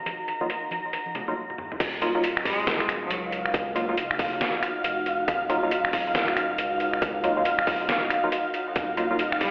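A murky, telephone-filtered haze hangs over this brooding deep dubstep fragment, where a blurred granular pad and a gritty, pitched-down sampler kit with muffled snare, hats and toms plus finger snaps open alongside brief damped congas, joined at 0.4 seconds by hollow organ stabs soaked in chorus, phaser and dub echo, before a drum fill at 1.5 seconds drops into a tight layered kick, a tube-saturated sub bass and a fleeting nasal, bowed cello phrase with vibrato and portamento around 2.5 seconds.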